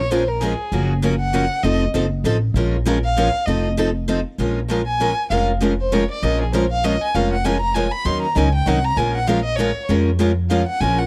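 Fiery yet bittersweet, this short cut of acoustic string swing in the jazz manouche style moves in a lively three-beat metre with a swung eighth-note feel. A bowed violin takes the solo throughout, sitting up front and close with a soft attack, expressive vibrato and sliding portamento that give it a tender, singing voice. Beneath it, a pizzicato upright bass on gut strings sounds woody, dark and thumpy, pushed forward in the mix. Two picked steel-string acoustic guitars supply the accompaniment: one has a bright concert tone, while the other, a boxy parlour instrument, sits further in the background. The harmony cycles through minor-seventh and dominant chords, with the same section heard twice, the second pass beginning at 4.4 seconds. The sound is dry and intimate, a close 1970s-style studio recording with a small room ambience.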